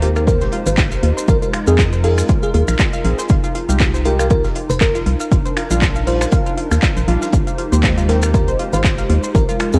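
Swung sixteenths at 119 BPM drive this late-night deep house excerpt: a punchy, overdriven electronic kick up front and a house kit of snaps, claps and metallic hats sit over a very quiet, dry reggae kit of hi-hat and snare, while grainy maracas join at 0.2 s; a dark, up-front organ-like FM bass pumps beneath a hollow, flute-like pad and deep, warbling chord stabs in the background, a round analog pluck plays arpeggios through tape echo, and a bell-like, sparkling FM electric piano carries the melody with chorus, phaser and echo over an Abmaj7, Bb7sus4, Fm9, Ebmaj7 progression, all captured as a home recording on cassette.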